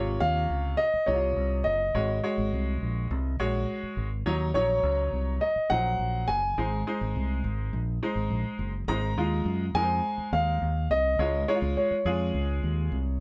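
Danceable and uplifting, this short excerpt of uptempo 1960s-style soul moves at 104 BPM in a straight 4/4, tuned to A4 = 442 Hz. A concert grand carries the melody high in its register, from Db5 to Bb5, with an intimate, vintage tone and audible action noise. A second concert grand, bright and brilliant, supplies the accompaniment across a broad span from C3 to Eb5, sitting a little lower in the mix than the melody. A punchy, direct and amped fingered electric bass anchors the low end between Gb1 and Gb2, and all three parts play from the opening to the final seconds, with the accompanying piano stopping at 13.0 s. The harmony moves through Dbmaj7, Ab7sus4, Ebm7 and Ab before settling on Db at 11.2 s, as an opening section gives way to a second one at 8.9 s. The band sounds as if playing live together in a small room, with moderate reverb and the instruments sitting up front.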